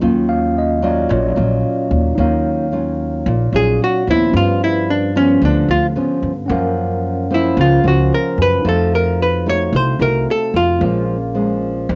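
A tine electric piano takes the lead through its built-in speakers over thumb-plucked, old-stringed nylon-string guitar and a thumpy, gut-strung upright bass up front in this intimate, melancholic bossa nova fragment in Eb minor at 111 BPM, before a dark, clean, miked hollow-body archtop guitar picks out the melody at 3.6 seconds over chords moving from Ebm9 to Bbm7, with cassette-tape coloring on the piano and both guitars, a moderate small-room reverb and a dull-topped home cassette sound.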